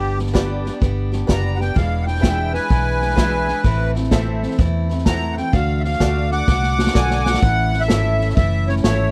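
With little reverb on the recording, this easygoing, nostalgic honky-tonk country passage swings at 127 BPM as a reedy, sweet accordion with light tremolo tuning sits up front and carries the melody as a solo until 7.4 seconds, over bright picked dreadnought acoustic guitar, a dark, round foam-muted electric bass, a distant, roomy drum kit played with bundle sticks that adds a fill from 6.5 seconds, and a detuned, jangly upright piano, while the chords move through G, E7, Am and D before shifting to A.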